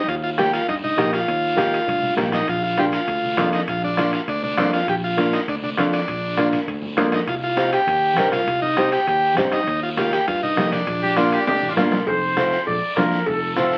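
Festive and danceable, this cumbia in Bb major moves at a brisk 200 BPM in a straight 4/4, heard as a short cut from a longer piece. A buzzy, vintage combo organ carries the melody up front until 11.7 seconds, over a growly, punchy fingered electric bass and a boxy, fingerpicked flamenco guitar whose finger squeaks come through in the accompaniment. The percussion sits mostly in the background: a soft-beatered bombo, a raspy guiro in a large room, ringing metal-shelled timbales and cowbell that are close and dry, and very quiet, low-tuned congas with a thick-skinned sound. Drum fills punctuate the groove as the chords move from Ebadd9 through Bb and Cm. A clear, close-miked trumpet enters at 11.0 seconds and takes a pop-style solo from 12.1 seconds, with vibrato and scooped notes over F and Bb. The whole track carries a wet club reverb and the vinyl crackle of a very old 78 rpm record.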